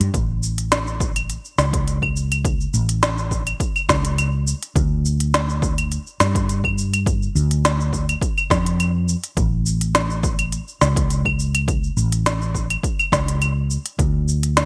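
A dark, round fretless bass sits up front alongside an organic electronic drum kit of cabasa, claves, crisp hi-hat and a woody snare, the kit overdriven, treated with gated reverb and re-recorded in a small room. An overdriven, punchy electronic kick joins at 0.1 seconds, layering beneath the groove in this meditative, hypnotic piece of organic downtempo, cut from a longer work. The bright digital production recalls the 1980s, keeping the sound dry and close.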